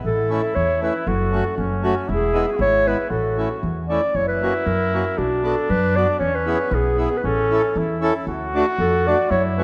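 A straight, bouncy 2/4 pulse at 117 BPM drives this festive alpine folk dance-band excerpt in A major, where a woody, thumpy pizzicato upright bass on gut strings sits up front beneath a reedy, hollow accordion entering at 0.3 s, while an up-front, mellow, smooth classical clarinet carries the melody from 0.1 s over a trumpet second line with light vibrato, all in a moderate concert hall reverb as the chords move through A, F#m, E, A, F#7, Bm, E and A before a new section opens on D at 8.3 s.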